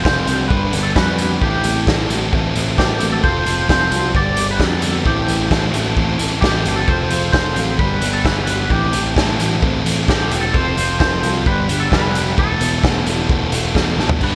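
A straight 4/4 beat at 131 BPM from a raw, gritty garage drum kit with a punchy kick, entering at 0.1 s, drives this cool, bittersweet indie rock excerpt in A minor, where a double-tracked fuzz guitar riff sits up front, a growly picked electric bass holds the low end, and a twangy, compressed lead guitar carries the melody through analog chorus over a repeating F, G, Am7 progression that turns to Esus4 before a drum fill at 14.0 s, set in a lush hall reverb with bright 1980s-style digital production.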